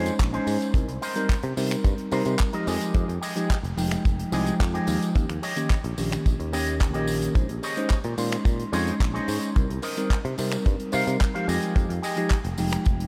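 Cosmic and sensual, this nu-disco excerpt grooves at 109 BPM in Bb dorian, cycling through chords such as Bbm11, Cm7, Fm9 and Eb7 inside a dreamy mix soaked in cathedral reverb. A tight, dry kick sits up front beside a growly, punchy picked electric bass, while a damped 70s drum kit adds finger snaps, handclaps and hi-hat, and a tambourine with maracas and group handclaps stays in the background. Over this, a bell-like tine electric piano pumps with sidechain and delay, and a twangy, clean electric guitar plays a riff through an envelope filter, chorus and delay, with a filter sweep running across the whole passage.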